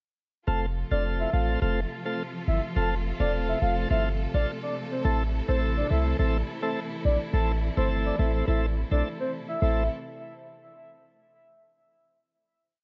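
Dancehall with a sultry, bouncy mood, this complete piece opens at 0.5 s on a chorus that shifts from F to Am at 5.0 s before settling on a final chord from 9.6 s. A round, detuned synth lead layered with a sub octave carries a syncopated hook through chorus, phaser and tape echo, while a smooth tonewheel organ plays syncopated chords through a slow rotary speaker and a rich, bowed string section holds a sustained pad beneath. Up front, a deep, boomy 808-style bass with a fast attack drives syncopated low notes, and the mix sits in a digital ambience.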